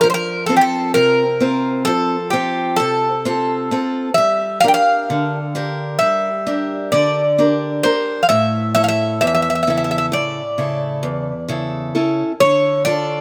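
Reflective and wistful, this short cut from a longer Greek folk piece moves at 131 BPM in a straight 9/8, with chords passing from F through Gm and A to settle on Dm at 12.4 seconds. A bright, metallic bouzouki carries the melody up front between G4 and G5, its double strings giving some notes an octave-doubled shimmer. Close beside it, a picked acoustic archtop guitar supplies warm accompaniment across a broad range, with audible finger squeak, and a moderate plate reverb adds a lingering halo.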